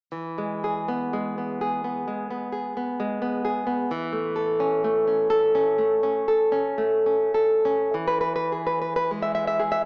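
A romantic piece for solo classical guitar in E major, it moves at a slow, rubato 49 to 66 BPM in 4/4 with a tender, warm mood, and is cut from a longer piece. The fingerpicked nylon-string guitar sits up front with a full-bodied, deep classical tone across E3 to E5, resting on E, shifting to A over E at 3.9 seconds and returning to E as a new section begins at 7.9 seconds. A wet spring reverb and a small-speaker sound place the guitar further back in the room.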